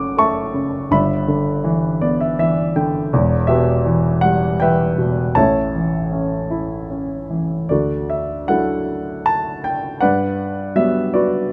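In a rubato 3/4 that drifts between 74 and 84 BPM, this peaceful, tender classical solo piano piece in D major (tuned to A4 = 439 Hz, and cut from a longer work) sets a dark, mellow grand piano up front with close, detailed miking and light reverb, ranging from E1 to D6 with short sustain, adding a brief fill from 1.6 to 3.1 seconds as the chords move through F#m7, G6, Em and A before a second section begins at 7.7 seconds on Dadd9 and settles toward Gmaj7.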